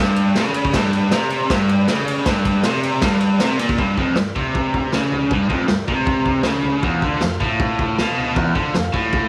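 A straight 4/4 beat at 157 BPM drives this rowdy, swaggering garage rock fragment in G major, cut from a longer piece, with a raw acoustic drum kit of punchy kick, medium-tuned snare, ride cymbal and toms sounding gritty, saturated and up front with a rolled-off top. A biting, overdriven, double-tracked electric guitar picks a low riff bathed in spring reverb, while a very quiet, reedy vintage combo organ holds clean sustained chords with light vibrato and opens with a brief fill in the first 0.7 seconds. A small room ambience surrounds the band, the music shifts into a new section at 3.8 seconds, and the harmony moves from G to F5 at 6.8 seconds.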